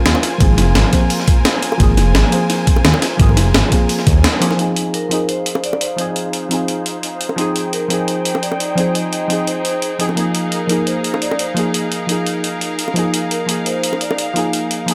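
Lightly reverberant and up front, this dreamy, lush liquid drum and bass excerpt opens with a deep, mellow chord stab under a filter sweep and tape echo, dark bowed chamber strings, and a smooth gliding sawtooth bass with portamento that drops out at 4.2 s on a band accent. Gritty, compressed breakbeat kits with high-tuned snares, one up front and one filtered in the background, play over a thumpy electronic kick and tight, dry bongos, with the kick and the background kit gone by 4.5 s. From 4.9 s a ringing vibraphone with slow motor vibrato and delay carries the melody as a filter sweep moves across the strings.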